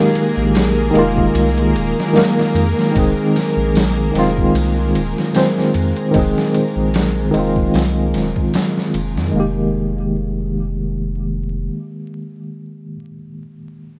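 Melancholic and cinematic, this trip hop excerpt at 75 BPM in F minor opens on a worn, slightly out-of-tune tine electric piano with tremolo, tape echo and a filter sweep, joined by bright, distant strings holding sustained chords and a tense, nasal drone in the background, all moving between Fm11 and Ab. A gritty, pitched-down sampler-style drum kit with a thumpy kick and swung sixteenths enters at 0.2 seconds, followed at 0.4 seconds by a round, deep analog bass with tube saturation, and the drums, strings and drone drop out near 9.4 seconds. The bass carries on to 11.7 seconds and the electric piano rings on alone to 14.0 seconds, all under a rough home-demo sound with light reverb and vinyl crackle.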